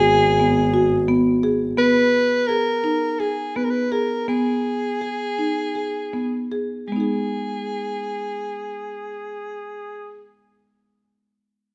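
An up-front soprano saxophone with jazz-style vibrato, soft attacks, scooped notes and a smooth top carries the restless, urgent melody in this 7/8 fragment of contemporary chamber music, over equally forward marimba arpeggios played with medium mallets, while a dark, veiled, muted double bass, bowed con sordino, sounds only until 1.8 seconds, all set in a moderate recital-hall reverb.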